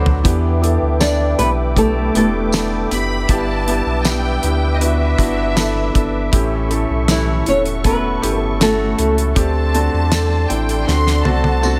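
A tender, emotional pop ballad moves at an unhurried straight four, built on a soft felt-muted upright piano with audible action noise, a round sine sub bass up front, and a damped 70s drum kit with a fat snare and tight kick that opens on a fill and closes with another from 10.9 seconds. A fingerpicked flamenco guitar carries the melody from 1.0 to 9.1 seconds, finger squeaks and all, over a detuned sawtooth pad with chorus and filter swells, while a jingly, band-limited tambourine sits in the background. From 2.9 seconds a lush bowed violin section adds a second line with vibrato and digital delay, as the harmony passes from Em7 through G6 and A7 to a D7sus4 resolving on D7 in a small, lightly reverberant room.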